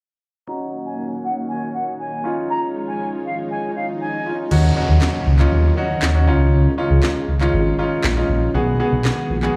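A filtered opening brings in flute, piano and string machine together at 0.5 s in this bittersweet, driving dance-pop excerpt in Eb minor at 119 BPM. The silver concert flute carries a pure, straight-toned melody with a crisp attack, set back in the distance through slapback and tape echo, while the clear concert grand piano plays intimate accompaniment with audible action noise and long sustain. Beneath them, the string machine's cellos hold mellow, vintage sustained chords thickened by ensemble chorus, moving from Ebm7 to Dbadd9. A background swell and downlifter enters at 3.2 s, leading into the fuller second half at 4.5 s, where a glossy, dark chorused synth bass sits up front and a layered electronic house kit adds a cracking snare, handclaps and crash cymbal. The piece is heard as a live gig through the venue's PA with light club reverb, and it is cut short after an Abm7 at 8.5 s.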